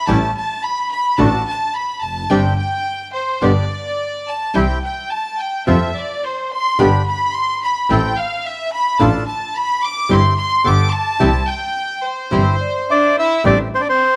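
A biting, earthy chamber violin section opens this tense, dramatic tango at a rubato 108 BPM in C major, carrying the featured line over fingerpicked, bright nylon-string guitar, dark, reedy bandoneon stabs and an intense bowed double bass, until a mellow soft-mallet vibraphone enters at 12.6 seconds and a warm, mid-forward bandoneon melody appears at 12.9 seconds, set in a moderate echo-chamber and small-room ambience.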